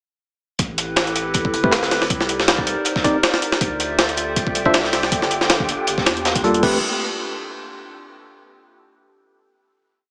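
This short, whole piece of dark, frenetic drum and bass with a jungle edge is driven by a heavily chopped sampler-style breakbeat, up front and compressed, with a thumpy kick, a high-tuned snare, crash and hats carrying a gritty, pitched-up bite. Behind it sits a second, looped acoustic break with edits, saturated and rolled off at the top, its hats and snare thinned by filtering and set back in a small room. A warbly, detuned tape-like pad holds nostalgic lo-fi chords with syncopated pushes, one shape moved in parallel from Am9 through Cm9, Dm9 and Gm9, while a round, soft dub sub bass underpins it with long dark notes. From 1.6 seconds a bright, clean tine electric piano adds sparse echoing stabs, and an airy, breathy wind-like noise texture drifts in at 4.2 seconds on a held high note. The drop runs until 6.6 seconds, when the music settles on a final Am9 chord, all heard through a digital room ambience with a small-speaker character.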